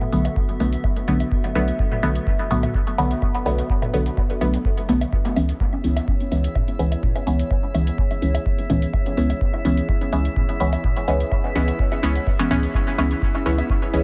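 A straight 4/4 dub techno pulse, hazy and nocturnal, rests on a deep analog kick, overdriven metallic hi-hats and tape-flavoured electronic toms and woodblock sitting in the background with dub echo, while a round, soft sub bass pumps beneath. Up front, a muted, detuned sawtooth chord stab with a filter sweep, chorus, phaser and dub echo moves from Bm7 to C#m7 at 5.1 seconds over a warbling, lo-fi pad with a slow attack and a dark, vintage tone. At 5.8 seconds a calm, glassy texture of drifting overtones enters on a sustained high note, in this passage cut from a longer piece.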